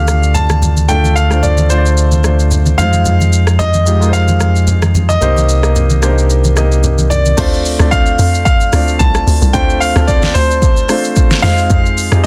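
Soulful and deep, this amapiano excerpt at 111 BPM in D phrygian sets a clear, smooth, vintage concert grand piano melody with delay over polished accompaniment from a second grand piano, a layered, tape-toned deep house drum kit with a softly clipped snare, bright low-tuned congas in the background and a full sine sub bass with octave, until the drop at 7.4 seconds swaps the sub and congas for a tight, punchy FM log drum bass in a dense, heavily limited, nearly dry mix.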